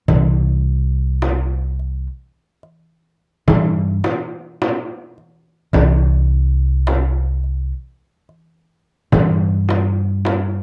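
A woody, thumpy upright bass sits up front, plucked on gut strings and pitched low between C2 and G2 throughout this stately, warm fragment of a longer Arabic maqam ensemble piece, moving at 106 BPM in a straight 10/8 with A4 tuned to 439 Hz. Beneath it, a small clay-shelled darbuka with a natural skin is played by soft hands, close and dry in the background, while a small, bright frame drum sounds from a distant, large room. Light reverb and a dark production frame the whole ensemble across its roughly 10.6 seconds.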